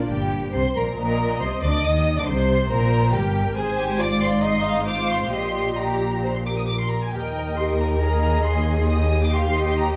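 This excerpt sits in a moderate recital hall reverb with a dark production, a lively, spirited passage cut from a quick classical-period movement for string orchestra in Eb major, moving at 137 BPM in 4/4 with a rubato feel. High above, a distant, lush violin section carries the melody between G5 and Eb6, its vibrato smooth and even. Beneath it a second violin section plays a focused line from Eb4 to F5, while the violas fill in accompaniment between G4 and Eb5 with a rich, bowed tone. The bass is shared by an expressive chamber cello section, set back in the hall, and a woody double bass section reaching down to G1, the latter sitting highest in the mix. All five sections play through the whole ten seconds, the harmony opening on Gmadd11 and Cm9/Bb before settling on Eb and Ab and closing on Eb at 8.9 seconds.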